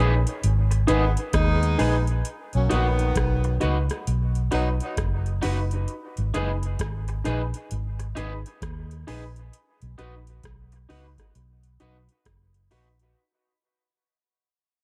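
Hypnotic and spacious, this short dub reggae excerpt moves at a slow 66 BPM in 4/4 with a swung sixteenth-note feel, drifting between G#m and B under a fade-out that spans the whole clip. A dark, round, foam-muted electric bass sits up front and carries the most weight, while a booming analog drum machine with a deep kick, metallic hats and rim clicks comes in at 0.3 seconds, overdriven and roughened by a small room. Above them, a slightly broken-up, twangy electric guitar with chorus and dub echo shares the accompaniment with woody upright piano stabs, also sent into the echo. A horn section with light vibrato adds a second line from 0.9 to 4.7 seconds, its phrases trailing off into dub echo. Light reverb gives the whole mix an airy, open sense of space.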